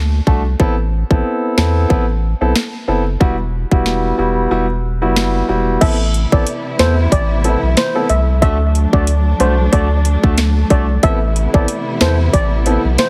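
A swung 92 BPM dancehall groove in A dorian, hypnotic and tough, rides a tight electronic kick, sharp snare and metallic hats under a round sine sub bass and an intimate concert grand piano with audible action noise, the kick dropping out from 4.5 to 5.8 seconds before a shimmering steel pan melody with digital delay and bowed strings with vibrato and sidechain pumping enter at 5.8 seconds, all through a heavily compressed radio sound in this short cut from a longer piece.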